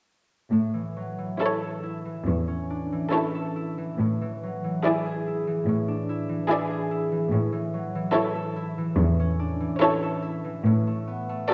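Tender and lyrical, this brief passage, cut from a longer piece, is a slow romantic movement for symphony orchestra in A major, moving at 71 BPM in 4/4 with a freely breathing rubato feel. A mellow, ringing concert harp sits up front with arpeggios from 0.5 seconds, joined at once by a muted cello section holding the bass line with light vibrato. At 1.4 seconds the other muted strings enter: a chamber violin section carries the veiled melody with a soft attack and smooth top, a symphonic violin section adds a lush second line, and a close-sounding viola section fills in the accompaniment, all played con sordino with vibrato. The harmony rests on A, shifts to E7 over an A bass, returns to A, and falls away to an unharmonized close near 10.7 seconds. A scoring stage reverb with a 1.6-second decay wraps the ensemble in a dark, wet, warm sound.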